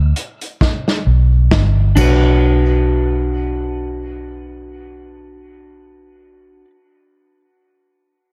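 A slow, swung 4/4 groove at 66 BPM opens this short dub reggae excerpt in B minor, with a spacious, deep mood. A dark, round, foam-muted electric bass sits up front from the start and carries the low end throughout. Over it, a muffled, lo-fi vintage drum kit with a punchy kick, medium-tuned snare, hi-hat and crash arrives at 0.2 seconds and rolls into a fill from 0.6 seconds during the opening break, its warm, rolled-off top matching its small-room character. As the harmony moves from G to B minor at 2.0 seconds, a clean, picked electric guitar enters up front, its dark tone trailing dub echo. A close, dry tambourine adds a brief touch of percussion in the background. The whole cut carries a snug, intimate room ambience.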